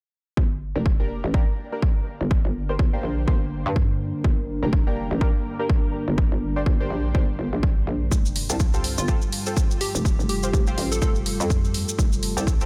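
A swung sixteenth-note groove in 4/4 drives this swaggering, bouncy bass house excerpt, anchored by a punchy, overdriven electronic kick that sits up front and carries the air of a large room. A hollow, knocking FM bass with a fast, decaying attack pumps against the kick, while a nasal, band-passed chord stab with phaser, subtle chorus and a diffuse delay runs under a filter sweep. From 2.6 seconds a deep, moody pad of detuned sawtooth and sine voices rises on a slow attack, its chorus and reverb lending a mellow haze as it also moves through a filter sweep and pumps with the sidechain. The harmony shifts from Gm to Fadd9 at 8.1 seconds, where grainy, close maracas join, followed shortly by an overdriven electronic hi-hat. A catchy square-wave unison lead with a sub octave and noise layer plays a brief plucky phrase from 9.0 seconds, trailing into ambient delay, and the mix carries a light reverb.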